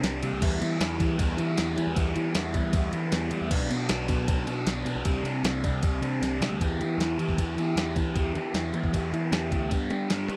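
A dry, close sound in the manner of a 1970s studio frames this bittersweet, moody indie rock passage in E minor, moving at a straight 155 BPM and cut from a longer piece. Up front, a crunchy, double-tracked overdriven guitar carries the riff through a phaser, while a growling, bright picked electric bass adds its own overdrive beneath it. A clean 12-bit drum machine with a thumpy kick, medium-tuned snare, crash and ride plays throughout, landing a fill at 6.2 seconds before the next section begins at 6.6 seconds and the chords return to Em before ending on G.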